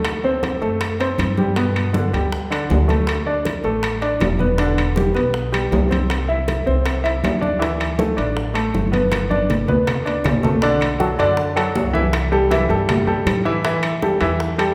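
A sunny, joyful salsa passage, cut from a longer piece, opens with a clear baby grand piano up front, an upright bass and bongos all starting together. The piano carries the accompaniment with an intimate, present tone, short sustain and audible action noise, moving through chords such as Gadd9, Em7 and Dsus2. Beneath it, the pizzicato upright bass sounds woody and thumpy on steel strings. Ringing, medium-tuned congas played with soft hands sit alongside metal-shell timbales, tight high-tuned bongos in the background and very quiet claves. A drum fill from 9.1 to 10.6 seconds leads into a new section built on Bm7, C6 and A5. The whole performance rings out in a recital hall with a lively, reverberant church-like ambience.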